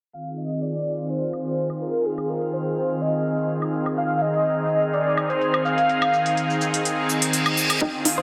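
Progressive house at 125 BPM in F dorian, dreamy and bittersweet, resting on an Fm7 chord as a velvety, chorus-and-dub-echo synth lead sings a mellow melody over a lush, airy supersaw pad that pumps to the sidechain under a sweeping low-pass filter. Crisp hats, shaker and woodblock also pump and sweep through a filter, while a faint glassy texture of drifting overtones hovers in the background from 1.3 s, all bathed in a lush hall reverb within a dense, heavily limited master. A reverse cymbal at 7.0 s leads into a riser, and at 7.8 s a round, bright analog pluck arpeggio arrives alongside a punchy, overdriven kick as this excerpt cuts off.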